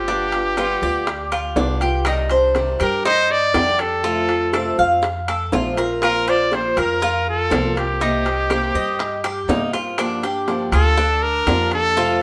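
A straight 4/4 groove at 121 BPM drives this warm, danceable Cuban son and guajira piece, where a bright, up-front solo trumpet with light vibrato carries the melody over the metallic double-string arpeggios of the tres, a boxy parlour-style picked steel-string acoustic guitar, a dark, thumpy gut-string upright bass, tight high-tuned bongos and ringing metal-shell timbales in the background, and very quiet woody claves, all played live together in one stone room with a wet reverb through chords moving from G7 to Gm7.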